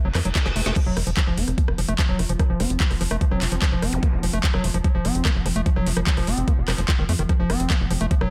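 Psychedelic trance with an alien, hypnotic pull, cut from a longer piece: a squelchy, gritty acid bass riff with sidechain pumping and delay rides over a tight, punchy sequencer bass, while an overdriven electronic kick knocks up front and an overdriven garage kit adds woody snare, metallic hats, handclaps, rim clicks and crash. A reverse cymbal and zap sit in the background at the start as a drum fill leads in, and from 1.5 seconds an evolving, morphing wavetable pad with chorus, phaser and pumping drifts behind. A very quiet, nasal vowel-sweep wobble bass surfaces briefly from 2.6 to 3.6 seconds in a dry, close mix.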